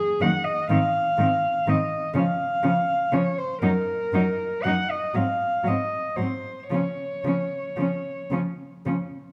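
A single muted cello carries the melody up front, its veiled, soft-edged tone and light vibrato singing between Ab4 and Gb5 from the very start until 8.3 seconds. This is a lyrical classical piece for a cello ensemble of four muted players, drifting in 6/8 at a slow, rubato 36 to 42 dotted-quarter beats per minute in Db major, with a warm and tender mood. Just after the opening, a second cello with a smooth top adds an inner line beneath, while a more distant accompanying cello glides between notes with portamento. The bass cello, nasal and dark with vibrato, anchors the harmony as it moves from Ebm over Gb through Ab5, Db, Ebm and Ab7 before settling on Db, and the lower three parts hold on until 8.9 seconds. A moderate recital-hall reverb gently surrounds the con sordino ensemble in this brief section cut from a longer piece.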